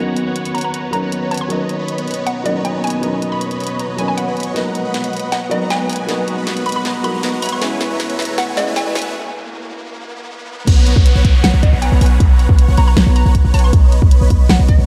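A half-time 4/4 groove at 157 BPM carries this lush, playful future bass piece in B major, where a dark, worn baby grand piano with audible action noise and soft, sul tasto chamber strings pump under sidechain beneath huge, detuned supersaw chords that filter-sweep through the build-up, while a hollow, bouncy square-wave pluck carries the melody through chorus and digital delay. A pop drum kit with a fat snare plays a fill from 4.6 to 9.1 seconds before a short break, and electronic risers and downlifters sit in the background. At 10.7 seconds the drop lands as the piano and strings fall away, and a punchy, layered electronic kick and a deep, boomy 808-style bass with tube saturation drive the phased supersaws in a lightly reverberant mix.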